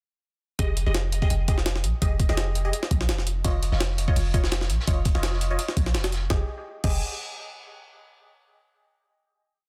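A gritty, pitched-up jungle sampler-style kit with a thumpy kick and high-tuned snare drives this short, nostalgic and raw drum and bass piece, its heavily chopped breakbeat sitting up front over a deep, boomy 808-style dub bass line, while muted, detuned sawtooth chord stabs with phaser and dub echo punctuate darkly in syncopation beneath, a saturated, rolled-off looped breakbeat kit joins in the background from 3.5 to 6.2 seconds, and the drop gives way to a final Fm9 chord at 6.3 seconds in a dense, heavily limited master.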